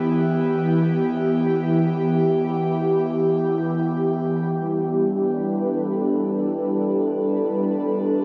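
In free time, this luminous, weightless ambient fragment, cut from a longer piece, features a lone breathy pad with a detuned sawtooth edge, a noise layer, slow attack, long release and chorus, sitting up front as it moves from Em to G at 4.5 s and sustains to 8.2 s inside a huge wash of reverb, all softened by the dull, muffled top of cassette tape.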